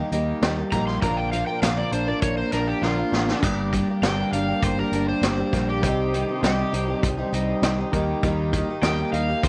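Wistful and reflective, this folk rock and heartland rock excerpt pairs a shimmering twelve-string acoustic guitar, a very quiet concert grand piano with audible action noise, a dark, slightly broken-up electric guitar riff with warbly pitch drift, a round fingered bass and an up-front vintage drum kit with dark cymbals and a high-tuned snare, while a bright, overdriven slide guitar solos from 0.7 seconds, a drum fill arrives at 2.8 seconds, and a soft, flute-like tonewheel organ with slow rotary speaker joins in the background at 3.4 seconds, all in light small-room ambience.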